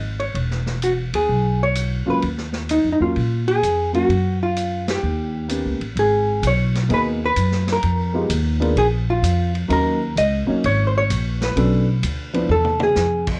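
Moody and cool, this short small-group jazz passage moves with a swing-and-bop lilt. A clean, fingered hollow-body electric guitar carries the melody up front, while a pizzicato upright bass with steel strings gives a woody, thumpy pulse close to the ear. A vintage drum kit sits mid-forward in a studio room: punchy kick, medium-tuned snare, toms, hi-hat, ride and crash, with shadowy cymbals and a rolled-off top. The band hits an accent at 4.8 seconds, and a drum fill closes things from 12.5 seconds. A dark, slightly detuned upright piano enters at 2.1 seconds with mellow, intimate accompaniment and audible action noise. Light reverb and the worn, warbling pitch drift of old cassette tape give the recording a faded, nostalgic cast.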